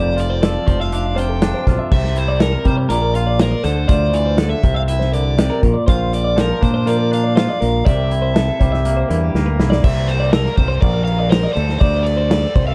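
A dark, lightly reverberant production frames this short math rock and midwest emo excerpt, bright yet wistful, moving at 121 BPM in a straight 4/4 over chords such as F69, C13, Dm7 and C9. A biting overdriven guitar carries the melody with plate reverb, while a bright, twangy twelve-string electric guitar spins compressed arpeggios through spring and plate reverb, and a clean, twangy electric guitar comps beneath until 11.8 s. A growling, punchy fingered bass sits up front, and a loose indie drum kit with dark cymbals and a tight kick in a pumping small room enters at 0.2 s, with a fill at 9.3 s leading into a new passage on Csus2 at 9.8 s.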